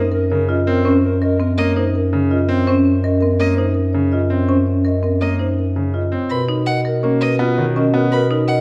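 A dark, warm recital-hall sound frames this hypnotic, propulsive minimalist pattern piece at 165 BPM in 5/4, where woody soft-mallet marimba carries the melody over percussive hard-mallet marimba arpeggios, an up-front mellow bass clarinet bass line, bright, polished concert grand piano accompaniment, a rich, vibrato-laden violin joining with arpeggios at 1.6 s, and a distant, dark clarinet second line that drops out at 2.4 s and returns at 6.3 s as the harmony shifts from Bbmadd9/Gb to Bmaj9.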